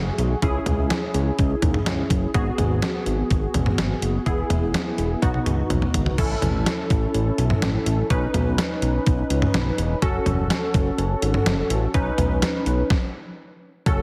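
Synth-pop at 125 BPM in a straight 4/4, this short cut from a longer piece carries a nocturnal, melancholic mood over a chord path that moves from C#m through G#m7, E and B, then A, Badd9 and F#m. A funky polysynth comp built from detuned sawtooth and square waves supplies the accompaniment, its punchy, plucked filter and ring-modulated edge softened by chorus into a mellow tone. Beneath it, a fat analog bass with a thick, saturated sawtooth sound sits up front from the opening, sustained and detuned. A detuned 8-bit digital drum machine enters at 0.2 seconds with a thumpy kick, medium-tuned snare, hi-hat, crash and toms, overdriven and re-recorded in a large room, and it plays a fill from 5.2 seconds into the second section before a stop at 12.9 seconds. The whole mix is bathed in a lush digital hall reverb and squeezed into a heavily compressed, radio-ready sound.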